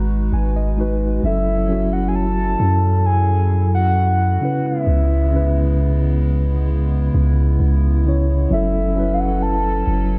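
A slow, straight 4/4 pulse at 66 BPM sets a sensual, late-night R&B mood in this short cut from a longer piece, with a dark production and little reverb. A long, deep 808-style bass sits up front, its sine-like tone hitting with a fast attack and decaying under the chords. A mellow, clean tine electric piano carries the accompaniment and opens with a fill before the melody arrives, while a hollow, airy pad with a flute-like softness holds sustained chords beneath it, touched with chorus. At 1.2 seconds a soft, round synth lead enters, layered with a sub octave and colored by chorus, phaser and vibrato as it sings in a high, narrow range. The harmony moves from G#m7 to F#m7, then C#m7, and back to F#m7 at 8.5 seconds.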